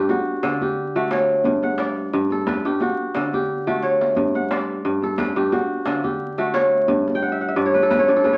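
Heard through the crackle of a very old 78 rpm record and a wet club reverb, this short cut from a longer piece of West African string and xylophone music moves at 88 BPM in 4/4 with a light 16th-note swing, in G lydian tuned slightly flat to A4 = 436 Hz. The kora sits up front throughout, its fingerpicked arpeggios ringing and crisp across a span from G2 to G5. Beneath it, a deep acoustic djembe with a live-room sound plays at a lower level, adding a drum fill from 3.7 to 4.2 seconds. The harmony sways between D and G before settling on a Gmaj9#11, as the kora closes with a fill from 7.1 seconds to the end. The mood is flowing and hypnotic, carried by the warm, ringing strings.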